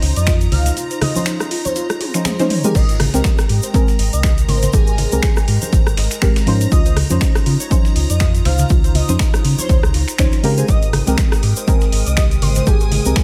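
A punchy, overdriven analog kick drum sits up front in this relaxed, soulful deep house excerpt at 121 BPM in 4/4, swung on the 16ths in Ab major. The kick enters at 0.3 s beneath a deep, full sine sub bass with an octave layer, while a deep house kit of metallic hats, finger snaps, rim clicks, toms and crash, also overdriven and set in studio reverb, joins bright, live-room congas, a grainy egg shaker and a very quiet, gritty sampler-style kit of hi-hat and snare. A soft, nasal, detuned chord stab with dub echo and a dark, warbling lo-fi pluck playing arpeggios carry the harmony, which moves between Dbmaj9 and Abmaj9, backed by a nostalgic tape-like pad and a shimmering vintage string machine of violins, both sitting in the background and pumping with the sidechain. Over this floats an airy, dreamy lead with vibrato, portamento and dub echo. A break runs from 0.8 to 2.8 s and ends in a drum fill, all set inside a digital ambience.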